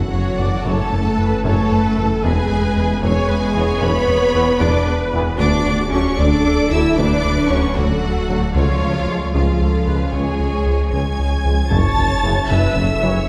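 Tense and futuristic, this hybrid orchestral and electronic film cue moves at 76 BPM in a straight 6/8 in F# minor, a short excerpt cut from a longer piece that steps through F#m7, E, D and C# before returning to F#m7 at 11.7 seconds. Two lush violin sections carry a vibrato-rich melody and a focused second line high above a close viola accompaniment, while a rich cello section sits in the background and a clear, very quiet double bass section enters at 0.4 seconds alongside a mellow tuba. A dark, tight French horn section holds sustained chords from the start, joined at 0.4 seconds by a distant, roomy trombone section, both kept very quiet. Underneath, a round analog bass drives a deep riff as the loudest part, a punchy sub bass with a pitch-drop attack reinforces the low end, and a very quiet shimmering pad adds ethereal, granular, detuned chords with an octave-up glow. Very quiet electronic impacts and sub drops mark the opening and the final return at 11.7 seconds, and the whole ensemble sits back in a wet scoring-stage reverb with a 2.0-second decay.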